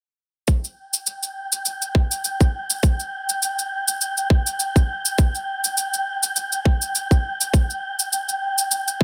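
Earthy and meditative, this organic downtempo piece settles into a lightly swung groove from a tight, overdriven electronic kick drum and an overdriven shaker, both up front and with the grit of a small room. At 1.1 seconds a breathy, wind-like tuned noise texture drifts in on a slow attack, sustaining high above with its own reverb and a long release. The whole is set in light reverb under a dense, heavily limited modern master, a short cut from a longer piece.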